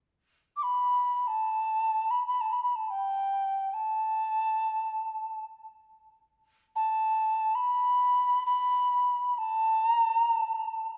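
From 0.6 s a solo alto ocarina with a breathy, clay-bodied tone carries this spacious, haunting fragment of world meditation music, its tongued, expressive phrases shimmering with vibrato and trailing analog delay, all set within an echo-heavy mix of wet chamber reverb and small-room ambience.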